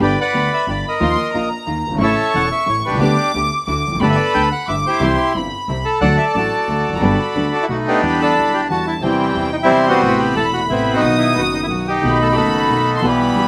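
Playful and elegant, this tango fragment moves at 180 BPM in a rubato 3/4, starting in G major and turning to E harmonic minor at 8.0 s. A bright, airy bandoneon sits up front with the melody. A bowed violin section with light vibrato and a period-style gut-string tone carries a high second line. A smooth, vintage grand piano supplies the accompaniment, and slapback echo colors the bandoneon, violins and piano. Very quiet muted strings, veiled and soft in attack, add con sordino stabs, while a woody, thumpy pizzicato upright bass on gut strings anchors the low end. The sound is dry, recorded outdoors with a layer of vinyl crackle.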